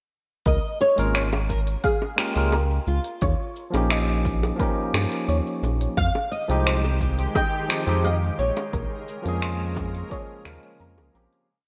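Smooth, warm sunset chillout in Db lydian at 87 BPM, where a dark, fingerpicked flamenco guitar with audible finger squeak carries a motif-based melody through analog chorus over a round, deep analog bass riff, a punchy layered electronic kick, a light lounge beat of finger snaps, smooth hats and shaker with gated reverb, tight high-tuned bongos, barky syncopated electric piano stabs with digital delay, a soft pluck arpeggio looping six steps against the bar in the background, and a shimmering ethereal pad that enters at 6.4 seconds before the fade-out from 7.8 seconds, all set in moderate plate reverb with bright 1980s-style digital production.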